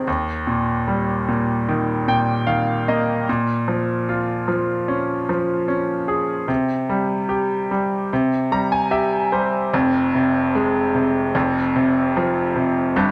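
A bright grand piano sits up front in a moderate large studio reverb, its long sustain ringing into the room while audible action noise keeps the sound close and present. This short solo passage, cut from a longer folk piece, moves at 75 BPM in a straight 4/4 and settles in F minor, carrying an intimate, melancholic mood. The piano alone spans from low F1 up to Bb5, giving its brilliant upper notes a deep foundation beneath them. The harmony travels from Eb through Bbm7 to an open C5, and at 9.7 seconds a second section arrives on Fm before moving to an open F5. The excerpt ends at 13.1 seconds.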